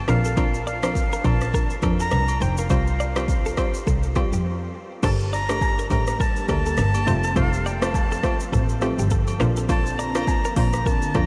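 A breathy, reedy jazz flute with delay opens this joyful, romantic afrobeats excerpt, joined at once by a hollow, bouncy square-wave pluck, a twangy clean electric guitar riff in the background, a rich bowed double bass and an overdriven, up-front electronic drum kit with deep kick and metallic hats, with faint agogo bells and woodblock following moments later, before a short break at 4.4 seconds and a glassy, ethereal FM pad entering at 5.9 seconds to drift through a dreamy mix soaked in reverb.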